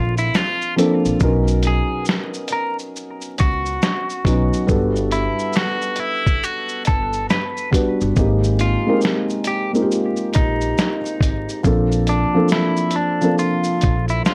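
A felt-muted upright piano with a dark, intimate, cassette-tape softness, a woody pizzicato upright bass and a clean, fingered electric guitar carrying the melody through phaser and analog delay open this nostalgic, mellow lo-fi hip hop excerpt together, joined at 0.2 seconds by a muffled, compressed sampler-style drum kit of thumpy kick, medium-tuned snare, hi-hat and shaker re-recorded in a large room, the whole piece swaying on swung sixteenths over drifting major-ninth chords in a dry, gritty recording touched with light reverb and vinyl crackle.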